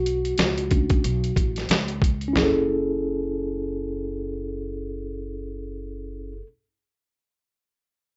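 A mellow, clean tine electric piano leads from the opening, up front and heard through its built-in speakers, over a woody, pizzicato upright bass with steel strings, while a gritty, compressed, pitched-down boom bap drum kit with a thumpy kick, medium-tuned snare, hi-hat and toms, tape-warm and re-recorded in a large room, plays from 0.1 s to 2.5 s, giving this smoky, swung jazz-hop fragment of a longer piece a dry, dull home-demo sound as the harmony moves from Bm9 to F#m9 at 2.4 s.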